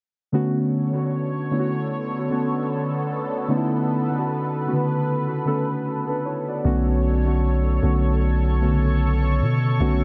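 R&B at a slow 76 BPM in B minor, this moody, longing excerpt from a longer piece sways with a 16th-note swing. Muted, felt-like synth keys carry the accompaniment from the start, sounding soft, intimate and dark, with chorus and analog delay giving them a close, up-front presence. Behind them a lush unison pad holds sustained chords, its detuned, airy layers blooming slowly into a thick, bright wash treated with chorus and phaser. The opening settles on a Bm9 chord, and at 6.6 seconds a deep, sine-like 808-style bass enters, each long note striking quickly and then decaying. The mix sits in light reverb yet leans heavily on echo, so the parts trail into a hazy, yearning space.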